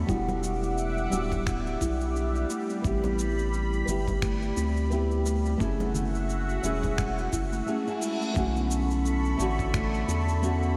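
A dreamy, reverb-soaked mix drifts through this relaxed, smooth sunset chillout excerpt, with a round, deep analog bass sitting up front beneath a thick, detuned unison pad that shimmers with chorus and phaser. A thumb-plucked classical nylon-string guitar carries vintage sampler grit and tape echo, while a buzzing, woody kalimba ripples through arpeggios with its own tape echo. A sampler-style overdriven kick thumps in the background alongside tape-warm electronic shaker and finger snaps and very quiet, close congas, and an electronic reverse cymbal rises at 7.7 seconds into the final Bm9 chord at 8.4 seconds.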